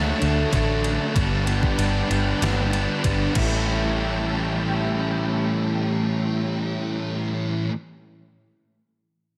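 A straight 4/4 pulse at 95 BPM opens this hazy, blissful shoegaze and dream pop excerpt, driven by a gated 80s digital drum machine whose thumpy kick, overdriven gated-reverb snare, crash and ride play from 0.2 to 3.5 seconds, under a dark, round, foam-muted fingered electric bass that stays up front throughout. In A mixolydian over Dmaj7, Gmaj7 and A7, a thick fuzz guitar with ensemble chorus and a biting overdriven guitar washed in reverse reverb carry riffs up front, while a slightly broken-up electric guitar through a small old amp plays arpeggios with subtle chorus and slapback echo in the background. A silky, detuned sawtooth string pad with slow attack and bright ensemble chorus holds sustained chords behind them until 6.9 seconds, all set in light reverb.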